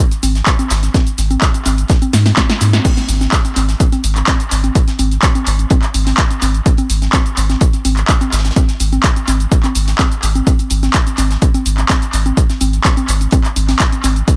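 Set in a small room with an echo-heavy mix, this trippy, hypnotic acid house excerpt moves at 126 BPM in a straight 4/4. A punchy analog drum machine sits up front with congas, crash cymbal, handclaps, hi-hat, shaker and snare, driven by overdrive and tape echo, while a short room clings to its snare, claps and hats. Beneath it, an up-front electronic kick thumps with analog weight, and a deep, round sine sub bass ranging from G#1 to G#2 holds sustained notes with a fast attack and a mellow, sidechain-pumped throb. A very quiet, mid-forward acoustic kit adds hi-hat and a medium-tuned snare from a studio room. A drum fill at 2.1 seconds leads to a band accent at 2.7 seconds, and the drop arrives at 2.8 seconds and carries the groove to the end.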